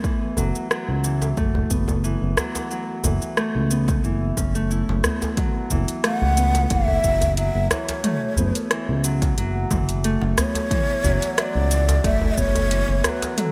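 A breathy low ney, end-blown with vibrato, tongued notes and lifted highs, enters at 6.1 seconds to carry an expressive, up-front melody through digital delay in this mystical, hypnotic organic downtempo excerpt at 90 BPM, set in F# minor pentatonic over a single F#m7 chord with a light 16th-note swing. Beneath it, a smooth gliding synth bass of detuned sawtooth and square tones with portamento sits up front, while a ringing, fingerpicked Celtic harp plays arpeggios through digital delay. The groove comes from an overdriven deep house drum kit with metallic hats, cabasa, rim click and toms, a deep overdriven electronic kick, and a tight, cracking djembe, with the mix placed in a lush hall reverb and given a bright 1980s-style digital sheen.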